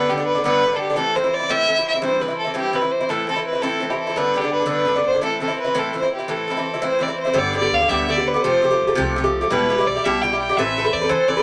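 A rich, smooth fiddle with light vibrato carries the melody up front in this dark, lively and wild Celtic jig in A minor at 112 BPM in 6/8, over metallic double-string picking from an acoustic Irish bouzouki, with a woody, thumpy pizzicato upright bass joining at 7.4 seconds as the harmony moves through G, Fadd9 and Em toward Amadd9, all set in a moderate small room.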